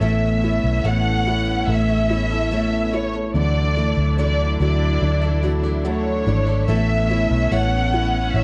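A lush, up-front violin section carries the melody in this tender, emotional pop ballad excerpt in A major, moving at a slow 72 BPM over Aadd9 and Dadd9 chords. An open, long-sustaining baby grand piano and a bright, full-bodied picked acoustic guitar playing arpeggios fill out the accompaniment, while a round, punchy, foam-muted electric bass sits prominently underneath and a distant string section holds sustained chords in the background. Light reverb and a worn cassette-tape character give the sound a warbly pitch drift, with the top end cut off at 11.0 kHz.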